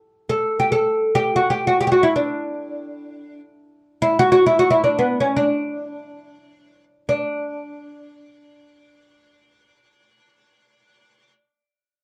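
This short excerpt from an Arabic maqam ensemble piece unfolds in free time, with a stately yet passionate mood. A solo oud carries the whole passage, entering at 0.3 seconds and sounding until 11.3 seconds. Its plectrum-plucked, fretless double strings give a woody, mellow voice that sits up front and deep, moving through a middle register. The opening phrases slow down between 2.3 and 7.1 seconds before a new section begins. A studio reverb adds a moderate sense of space, and the dark production keeps the acoustic tone warm and close.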